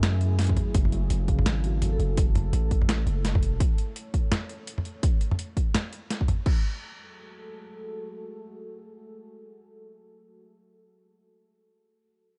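Dark, warm digital ambience frames this spacious, tense half-time drum and bass excerpt in F# minor at 168 BPM, where a drop opens on an F#madd9 chord with a deep sawtooth pad pumping under sidechain and chorus, a boxy felt-muted upright piano playing delayed arpeggios until 2.5 s, a long sine 808-style bass, gritty pitched-down sampler drums with a heavy electronic kick joining at 0.5 s, and a brief metallic vibraphone note with 12-bit grit before the drums stop at 6.5 s and the pad sustains alone.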